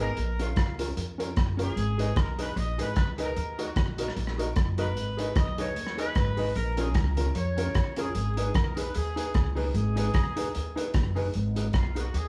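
Driving and energetic, this ska excerpt moves at 150 BPM in 4/4 with a swung eighth-note feel in G# dorian, its chords cycling through A#m, G#m and D#m. A distant, roomy horn section carries the melody over a bright, slightly detuned upright piano playing stabs and a dark, clean electric guitar sitting in the background with slapback echo. Underneath, a woody pizzicato upright bass and a muffled, lo-fi vintage drum kit with a tight kick, hi-hat and rim click sit up front, the whole band captured live in one large studio room with vinyl crackle.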